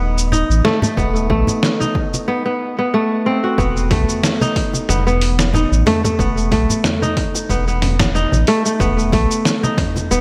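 This hypnotic, mystical organic downtempo excerpt at 92 BPM opens with crisp, ringing fingerpicked kora arpeggios up front through a digital delay, over a deep, round sine sub bass and a very quiet, breathy wind-like texture that drops out by 2.3 s. A gritty, compressed sampler-style kit of cabasa, hi-hat, snare and toms, treated with overdrive and gated reverb, enters with soft-handed congas and bongos in the background, and a punchy, overdriven electronic kick joins at 1.0 s. The groove swings lightly on a B7/D# to E5 progression, set in a moderate plate reverb with bright 1980s-style digital production.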